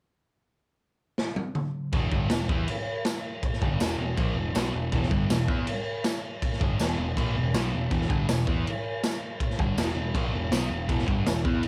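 A drum fill on a raw garage kit opens this gritty excerpt of garage rock at 1.2 seconds, its boomy kick, medium-tuned snare, toms and dark cymbals saturated and up front in a small, pumping room with a rolled-off top and the grit of cassette tape. At 1.9 seconds a thick, double-tracked fuzz guitar riff settles on E minor alongside a bright, punchy, overdriven picked bass, while a jingly tambourine sits in the background from 2.3 seconds. The whole home cassette recording carries a light reverb and a rough, unpolished edge.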